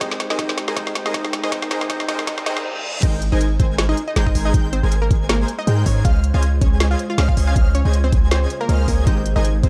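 Future bass in Ab major at 159 BPM with a swung half-time feel, this lush, bright excerpt builds over a drum fill, a very quiet riser and reverse cymbal and a brief stop before the drop at 3.0 seconds. There an airy, dreamy lead adds soft high arpeggios above a punchy sawtooth unison pluck melody, huge detuned supersaw chords, a faint shimmering ambient pad, a deep, up-front 808-style bass, a knocking electronic kick and a trap kit of woody snare, crisp hats and crash cymbal. Glassy digital keys sit in the background during the build, fall away at the drop and return near the end. The pluck, keys, supersaws, bass and lead all pump against the sidechain in a dark, lightly reverberant mix.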